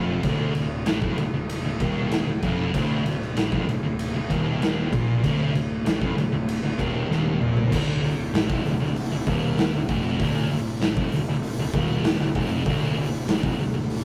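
Ominous and heavy, this stoner and doom metal excerpt crawls at 97 BPM in D minor, built on a Dm riff from two picked fuzz guitars: one dark and up front, the other warm and set in the background. A growly, overdriven fingered bass sits beneath them, while an oversized low-tuned acoustic kit brings a boomy kick, gritty saturated snare and toms, and dark cymbals in a pumping big room. After a drum fill from 7.1 to 7.7 seconds, the background guitar drops out and the rest push into a new section, all captured as a rough rehearsal-room recording with light reverb.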